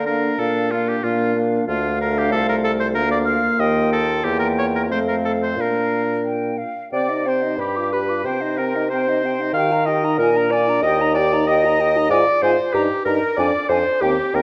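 Urgent and stormy, this quick classical-period movement for wind quintet moves at 93 BPM in a straight 2/4, opening in Bb major before turning to C minor at 6.9 seconds. A silver concert flute carries the melody high above the ensemble with a pure, metallic tone, soft attack and vibrato, while a clear oboe sings a second line with light vibrato, set up front. A smooth-topped clarinet and a French horn with a warm, lightly vibrato tone fill out the accompaniment, and a mellow, punchy bassoon anchors the bass, also placed up front. The harmony moves briskly through colorful chords such as Dmadd11 and Edim in the major opening, then darkens through Cm, G7 and Fm/Ab in the minor passage. All five players sound throughout this cut from a longer piece, framed by a moderate recital hall reverb and a dark, warm production.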